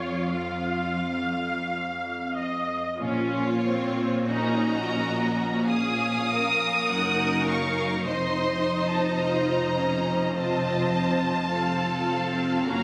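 Captured on a phone in the room with added studio reverb, compression and a moderate scoring-stage ambience, this elegiac, solemn fragment of a slow romantic movement for string orchestra in Bb minor moves in rubato 4/4 at 42-53 BPM: a distant, intense first violin section sings the high melody over a focused, up-front second violin line, smooth, even violas, clear chamber cellos and double basses with light vibrato, as the harmony passes from Ebsus2/F to Bbm at 3.0 s and F7 at 8.0 s.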